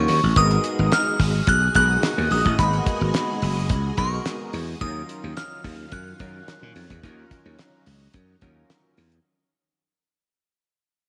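Late-night and funky, this early-eighties boogie funk excerpt moves at 108 BPM in a straight 4/4, built over G#m9 and D#m9 chords and fading out across its full length. A bright, crystalline FM synth bell carries the melody up high, its decaying notes treated with chorus, phaser and slapback echo. Underneath, a growly, punchy slap bass sits up front with a bright, direct and amped edge, alongside a damped 70s drum kit that is dry and mid-forward with a fat snare, tight kick and hi-hat. A retro, glossy chorused polysynth fills in mellow pulse-wave and sawtooth accompaniment with a filter sweep and phaser. From 0.4 seconds, a shimmering vintage string machine of violins adds soft-attack sustained chords through ensemble chorus, all set in a moderate echo chamber reverb.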